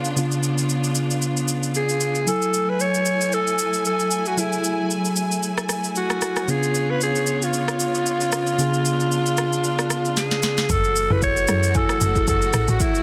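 A swung 16th-note 4/4 groove at 114 BPM, driven by an up-front electronic drum kit with a deep kick, sharp snare, rim click and shaker, opens this soulful, deep amapiano excerpt in F# minor. A mellow tine electric piano and lush bowed strings hold C#7b9 and F#m9 chords, and a breathy, raspy alto saxophone with delay carries the melody from 1.8 s. After a drum fill, the drop at 10.7 s replaces the electric piano with a punchy, woody log drum bass, joined at 11.1 s by rustic soft-mallet marimba stabs with delay in the background, all set in light reverb within a dense, heavily limited master.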